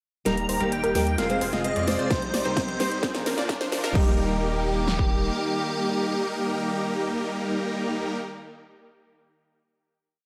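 Opening at 0.3 s on an anthemic, triumphant festival progressive house build at 130 BPM in Eb major, huge detuned supersaw chords with a sweeping low-pass filter and tape echo pump alongside a bright pluck doubling them in arpeggios, a picked steel-string acoustic guitar in dotted-rhythm chords, a thick chorused pad and a deep, tube-saturated sub bass, while an airy, dreamy lead with chorus, vibrato and echo sings motif-based phrases above a drum fill of metallic hats, crash and a big snare, a faint riser, and a punchy four-on-the-floor kick arriving at 2.1 s, before everything still playing settles onto a sustained final Eb chord from 4.0 s in a lush hall reverb with a dark production sheen.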